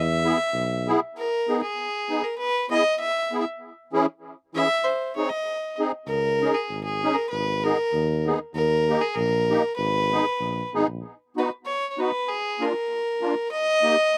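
A lightly swung 2/4 dance at 97 BPM sets a bouncy, jolly mood in this short alpine folk fragment, moving from G# minor to B major at 11.0 s. A single bowed fiddle carries the melody up front with a nasal, gut-string, boxy tone, while a shimmering, dark musette accordion with its wet tuning supplies smooth reedy accompaniment throughout. A mellow tuba with light vibrato and a classical-style delivery plays bass only briefly at the start and again from 6.1 s to 11.0 s, all in a dry outdoor sound with little reverb.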